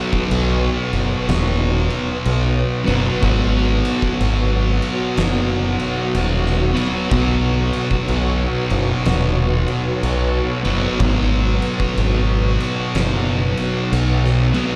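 A thick, double-tracked fuzz guitar riff on B5 opens this heavy, brooding stoner and doom metal excerpt at a slow 62 BPM with a swung feel, while a mellow, vintage ensemble organ-string holds soft-attack sustained chords in the background. An oversized low-tuned drum kit with a punchy kick, fat snare and dark cymbals sits back in a gritty stone-room sound, and a growling fingered bass joins up front at 0.3 seconds, overdriven and tube-saturated. The whole band is heard as a live gig through the venue's PA, with recital-hall reverb and a slapback echo on the guitar.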